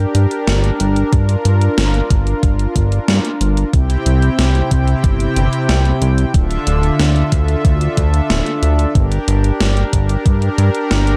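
A brassy analog pad and a fat, detuned sawtooth bass open this moody, cinematic synthwave excerpt together, both pumping with sidechain and sitting up front in a dark production. The pad holds bold, chorused chords with a soft attack and a filter sweep, moving from Gm through C and Dmadd9 before returning to Gm. Beneath it, the thick bass sustains with a fast attack and its own evolving filter sweep. A gated 80s digital drum machine supplies overdriven hi-hat and a snare drenched in gated reverb, while a thumpy, overdriven electronic kick joins at 1.1 seconds and drops out at 10.4 seconds. The straight 4/4 groove and digital ambience give the brief passage a moody, cinematic atmosphere.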